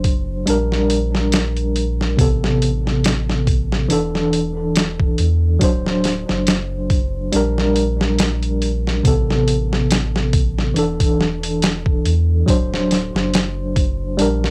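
Smoky and hypnotic, this trip hop excerpt rides a lazy swung sixteenth-note feel as a clean tine electric piano sits up front, its tremolo, tape echo and cassette coloring cycling through Bb6, Amadd9, E7sus4 and D7. Beneath it, a deep, round dub sub bass with a soft triangle-and-square tone and a touch of tube saturation holds sustained low notes. A gritty, pitched-down boom bap sampler kit, compressed and up front with a thumpy kick, medium-tuned snare and hi-hat, keeps everything grounded in a lightly reverberant home-cassette sound.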